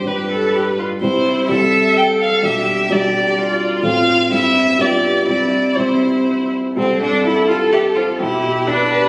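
A quick, lively and graceful classical-period movement for piano quartet in C major at 126 BPM in 3/4, cut from a longer piece, where an up-front violin sings the melody with vibrato, portamento and a soft attack over a dark, mellow baby grand with long sustain, while a clear, even, distant cello carries a second line from 0.1 seconds and a rich, focused viola joins in the background at 6.8 seconds, all heard through a wet recital hall reverb as captured on a phone in the room.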